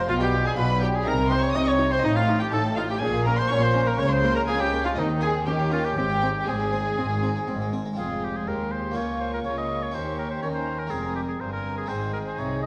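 A clear, up-front solo oboe carries the melody through this short cut from a baroque-style concerto movement in Ab major, lively and festive at 122 BPM in a straight 4/4. A violin section with a close, gut-string tone also plays the melody an octave-range higher, while a second violin section with a smooth top plays a supporting line in the oboe's own register. A dark, nasal viola section sits in the background, while a round, plucked harpsichord with a mid-forward French-style sound fills out the accompaniment. Rich, reedy cello and double bass sections hold down the bass, and all the strings share a period-style tone with light vibrato. The harmony moves through Cm and Bbm to settle on Ab at 6.0 seconds, then a new passage opens on Fm at 8.0 seconds before returning to Ab. A wet concert hall reverb surrounds the ensemble, and the recording carries the worn, warbling pitch drift of old cassette tape.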